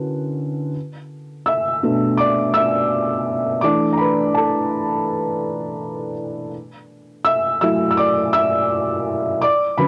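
This hip hop fragment, lifted from a longer piece, drifts by at 83 BPM in B minor with a gentle swing on the sixteenths, its mood nostalgic and hazy. A felt-muted upright piano plays alone throughout the 9.9 seconds, sitting up front with a dark, intimate, thickly felted tone dulled further by cassette tape coloring and a low-pass filter. Moving through Dmaj13, Bm7, E7sus4 and F#m7 in a lightly reverberant home-recorded space, it feels soft, close and personal.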